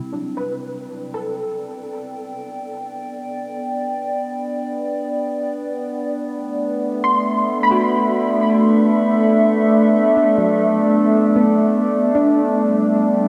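A warbly, tape-like pad sits up front in this serene, weightless ambient excerpt, holding sustained chords in G major with a nostalgic, lo-fi character, slow attack and long release, thickened by chorus and its own reverb. Beneath it, an analog drone built from sawtooth and pulse waves with pulse-width modulation evolves slowly on low notes, also carried forward in the mix with chorus. A soft, round pluck enters at 0.1 seconds, spinning gentle, decaying arpeggios across a broad range, its filtered, wave-folded tone colored by ensemble chorus and tape echo. All three parts fade in together over the full length, floating in free time through a simple progression that moves from G to Amadd9 at 6.3 seconds and back to G at 12.6 seconds. The production is dark and warm, bathed in a huge, wet reverb whose tail lingers for nearly eight seconds, so the sounds blur into a hazy, drifting cloud.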